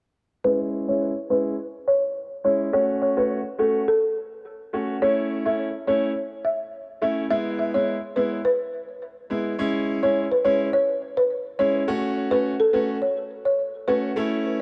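A straight 4/4 dancehall groove at 105 BPM sets a sultry, hypnotic mood in C# minor, cycling through C#m, F#m, A and E. A woody, rustic folk marimba played with medium mallets carries the up-front melody, softened by a low-pass filter and trailed by tape echo, while a clear grand piano with long sustain supplies boxy, filtered accompaniment until 14.6 seconds. A filter sweep runs from 0.4 to 9.6 seconds, and a lush hall reverb wraps this dark-toned fragment of a longer piece.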